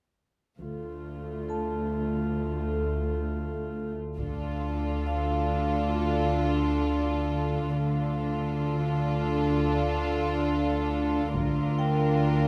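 Ominous and uneasy, this cinematic suspense cue, cut from a longer piece, moves at a slow, straight 4/4 pulse over a held D minor chord. Dark viola, cello and double bass sections open together at 0.6 seconds, the violas floating with a pure, sul tasto softness while the cellos and basses sit close and intimate in the background with light vibrato. A hard-malleted vibraphone soon rings out in the background with a metallic, bright, dry sheen, and just after it a sawtooth and pulse-wave analog drone on a low D swells in slowly with chorus, its detuned, evolving tone adding murk beneath the strings. At 4.2 seconds the music moves into a new section as warm violin sections join, one carrying a narrow melody and the other holding a second line, both bowed sul tasto with a smooth top. A distant taiko ensemble struck with hard sticks booms from a large room in two short passages, the first beginning at 4.2 seconds and the second at 11.3 seconds. 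The recording itself carries little reverb, keeping the ensemble close and exposed.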